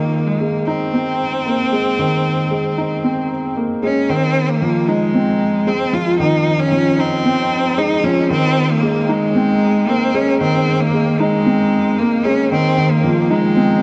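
Electronica at 114 BPM in F minor, tuned to A4 = 439 Hz, with a hypnotic, intimate mood: a felt-muted upright piano plays a soft, mellow riff up front while a single bowed cello carries a rich, focused melody with vibrato, both sounding from 0.0 s to 13.8 s over Abadd9 and Fm7 chords, all in a huge, wet ambient reverb, with a build-up starting at 4.1 s in this short cut from a longer piece.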